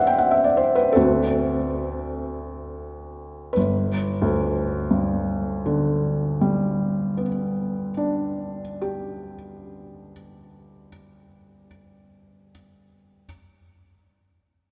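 In a rubato 9/8 lilt of roughly 21 to 29 dotted-quarter beats per minute that slows through the opening 3.5 seconds, this serene, tender romantic nocturne excerpt in G major features a lone felt-muted upright piano, mellow and intimate with audible action noise and placed up front, moving from G5/D to D7 and settling on G at 3.5 seconds across a range of G1 to G5, all bathed in a wet church reverb with a 3.5-second tail.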